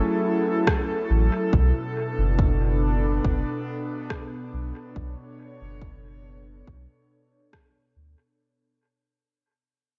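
Softly lit by light reverb and rolled off above 7.6 kHz, this hazy, meditative ambient dub excerpt at 70 BPM in B dorian opens on a breathy, detuned pad with chorus holding F#m9 and Bm9 chords while a clean pedal steel guitar arpeggiates in the background with dub echo until 1.3 seconds, an overdriven kick and a rim click with dub echo begin at 0.7 seconds, and a round, tube-saturated sub bass sits up front from 1.1 seconds, all under a fade-out.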